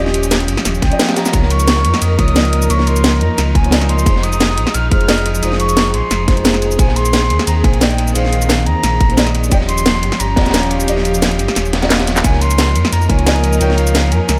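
Dreamy and lush liquid drum and bass, with a dark, boxy grand piano and an intimate bowed chamber string section pumping under the sidechain, all resting on a deep, sine-toned sub bass with octave that sits up front. A tight, tape-warm electronic kick and a garage kit with cracking snare, handclaps, cabasa and hi-hat drive the groove, while a gritty, saturated breakbeat kit of ride and high-tuned snare murmurs in the background. A pure, distant silver concert flute with tape echo carries the melody from 0.8 seconds; the kick drops out at 11.6 seconds, a drum fill follows at 11.9 seconds, and a band accent lands at 12.2 seconds.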